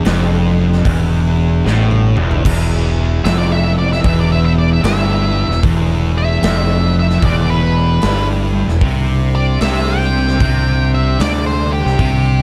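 Hypnotic and ominous, this stoner and doom metal excerpt moves at a slow swinging crawl, with a growling, overdriven fingered bass up front and a big, natural-sounding acoustic drum kit with a punchy kick and bright cymbals driving the riff alongside a double-tracked crunchy guitar and two fuzz guitars, one thick and dark, set in the background. A soft, flute-like tonewheel organ with key click and fast rotary speaker sustains chords very quietly beneath. After a drum fill ending at 2.4 seconds, a dark octave-fuzz lead guitar with tape echo enters at 3.2 seconds for a solo that runs to the end.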